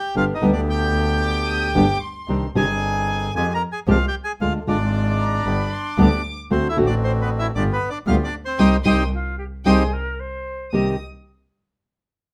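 A rubato 4/4 tango at 114 BPM in C minor, sultry and tense, where a reedy, close-miked bandoneon carries the melody over dark fingerpicked nylon-string guitar, a biting, earthy bowed double bass up front, bright bandoneon stabs in the background, and a floating sul tasto violin section entering at 1.2 seconds, joined by a distant, expressive flute at 9.1 seconds during a band accent on C minor, all in light reverb in a clip from a longer piece.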